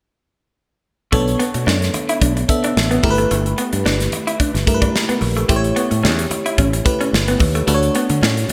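Bright, 1980s-style digital production with a moderate plate reverb gives this excerpt of polished jazz-funk pop an urban, nocturnal glow over a lightly swung 16th-note feel. From 1.1 seconds, an up-front, glassy FM electric piano with a bell-like attack and lush chorus carries the Bm9, G69, A7 and Dmaj7 chords. Alongside it from the same moment are a growly, punchy fingered bass, an airy studio drum kit with a tight kick and gated reverb, and a slightly broken-up, lo-fi guitar riff through a small old amp with analog chorus. Very quiet, ringing congas played with hard hands join from 1.4 seconds.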